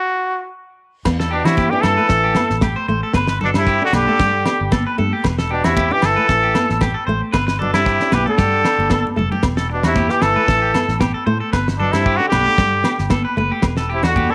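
A lightly swung 16th-note groove at 114 BPM in 4/4 drives this joyful, carefree highlife guitar band passage in G major, cut from a longer piece. A nasal, breathy trumpet with a straight mute opens alone and stays up front with a close, intimate vibrato, and at 1.1 s the band joins: a dry, dark drum kit with a fat snare and tight kick (with a fill at 8.8 s), a round, foam-muted fingered bass, background congas that are high-tuned and hard-handed, ringing agogo bells, and a fingerpicked flamenco guitar with fresh strings. A twangy, slightly broken-up electric guitar plays arpeggios through tape echo while a punchy, vintage trombone adds a second line over a cycling Em7, Am and Gadd9 progression in a light reverb.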